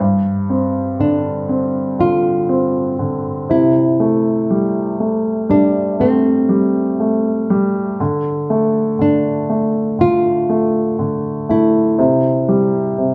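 A straight 4/4 pulse at 60 BPM carries this tender, hopeful pop ballad in C major, cut from a longer piece, where a polished grand piano with long sustain plays the low accompaniment through G7sus4, C6, Dm and C while a classical nylon-string guitar, thumb-plucked with audible finger squeak, enters at 1.0 s to sing a warm, up-front melody, both played live together in one room and bathed in a lush large-studio reverb.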